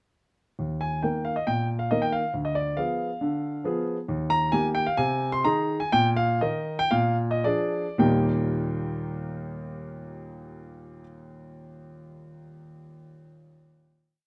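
In a straight 4/4 that slows from 3.2 to 8.0 seconds within a tempo of 108-139 BPM, this short, graceful and cheerful classical-period sonatina in Eb major is played by a solo grand piano with a smooth, vintage, up-front tone, carrying a single-line melody over bass and chords on the beats from D2 to C6, passing through a diminished chord and a Bb7 before settling on a held Eb chord at 8.0 seconds, all captured by close, detailed microphones with light reverb.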